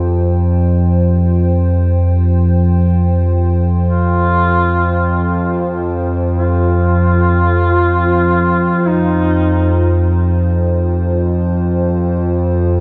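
A warbling, up-front analog drone on F2 with pulse-width modulation and chorus sounds together with a dark, detuned pad of sustained Fsus2 chords coloured by ring modulation and a sub octave, opening this unsettling, cavernous dark ambient excerpt in free time, tuned to A4 = 441 Hz. A distant, mellow duduk enters at 3.9 s with a folk-style solo full of vibrato and scooped notes through a diffuse ambient delay and stops at 10.1 s, all set in a vast cathedral reverb with a cassette-tape character.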